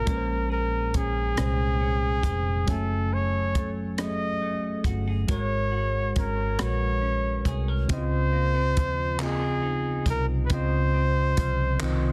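A dry, dense and heavily limited modern master frames this intimate, unhurried slow six-eight R&B excerpt at 46 BPM in Db major, where a clear, up-front flugelhorn sings the melody with light vibrato and scooped notes over a worn, slightly out-of-tune mellow tine electric piano, a very quiet clean semi-hollow guitar second line, a round, foam-muted vintage fingered bass, and a compact cocktail kit of handclaps, hi-hat, tight kick and rim click with soft clipping on the snare, as the harmony moves from Bbm9 through Gbmadd9 and Ab9sus4 to a Dbmaj9 at 7.9 seconds.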